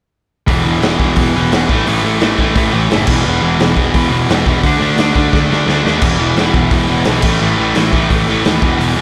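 Rebellious and rowdy, this short punk rock excerpt charges along at 173 BPM in a straight 4/4, with two overdriven electric guitars picking a power-chord riff that moves through E5, A5 and D5 from 0.5 to 9.0 seconds, one bright and up front, the other sludgy and warm. Underneath, a fuzzed, growly picked bass sits in the background, while a raw garage drum kit of kick, snare, hi-hat, crash and splash sounds punchy, gritty and up front in a bright stone room, its top rolled off. A drum fill arrives at 5.3 seconds, and light reverb surrounds the mix.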